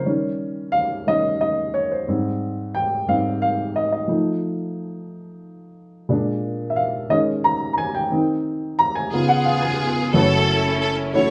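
Jubilant and hopeful, this short gospel passage, cut from a longer piece, moves at 60 BPM in a straight 6/8 and is tuned to A4 = 441 Hz. A dark upright piano carries the accompaniment from the start, its mellow, woody tone sitting up front with a natural, short sustain across a range from low F#1 to Bb5. The harmony travels through Eb7, Abmaj7, F7 and Bb7, easing into Eb7sus4 and Eb6 before a Db7. At 9.1 seconds a rich symphonic string section enters with the melody, bowed with vibrato and sounding smooth, even and lush as an up-front ensemble. The closing stretch shifts to F#m7 at 10.1 seconds, with the band heard live in one room inside a wet large studio reverb.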